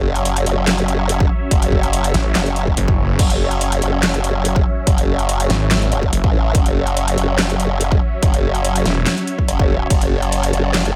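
Heavy wobble dubstep at 143 BPM in a half-time 4/4 feel, this menacing excerpt is built on a saturated, formant-filtered wobble bass with chorus and overdrive, joined from 2.1 seconds by a snarling, growling distorted saw bass, both sitting up front. Lush, bright supersaw chords sustain overhead through phaser, low-pass filtering and sidechain pumping, while a dubstep kit of huge snare, metallic hats, handclaps, crash and ride sits up front alongside a punchy, overdriven electronic kick that enters at 1.2 seconds. The mix is dry, with little reverb.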